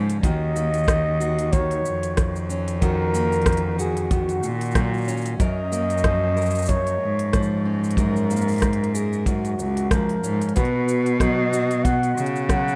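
A rough home-demo sound with light reverb and a small-room feel frames this delicate, pastoral folktronica excerpt in F# major, set at 93 BPM with a gentle 16th-note swing over D#m7, F#maj7 and Bmaj7. A fingerpicked steel-string acoustic guitar plays full-bodied arpeggios over a rich, bowed cello bass line with vibrato. An up-front, dark, tight kick and an overdriven electronic kit of crisp hi-hat, cabasa and rim click keep time. Above them a breathy, whispered flugelhorn carries the melody with scooped notes and a soft attack, touched with delay.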